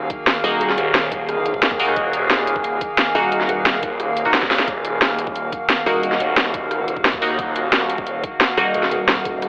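Dark technical drum and bass at 177 BPM in Eb minor, futuristic and tense, cut from a longer piece and set in a lush hall reverb with a narrow telephone-like tone. An overdriven kit with cracking snare, bright hats and rim clicks sits up front over a knocking electronic kick, with a drum fill at 4.4 seconds, while a swirling, thick detuned saw bass with phaser holds the low end until 8.2 seconds and a heavy, pulsing pluck wobble bass surfaces in short bursts. Above them an eerie, metallic inharmonic drone sustains chords with sidechain pumping, and a nasal, band-passed chord stab with dub echo flickers in the background.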